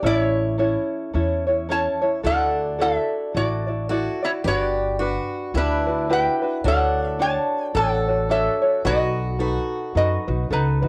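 A home cassette recording in a small, modestly reverberant room frames this languid, dreamy Hawaiian excerpt in D major, moving at 109 BPM in 4/4 with a swung eighth-note feel. Up front, a metallic, nasal lap resonator guitar carries the melody with slide and fingerpicks, its sound colored by cassette tape, while a bright, light tenor ukulele fingerpicks the accompaniment and a woody, thumpy upright bass with steel strings is plucked underneath. At 2.2 s a boxy, picked swing-style acoustic guitar enters with a quieter second line as the chords drift from Dadd9 through Gmaj7 and Dmaj7 to B7.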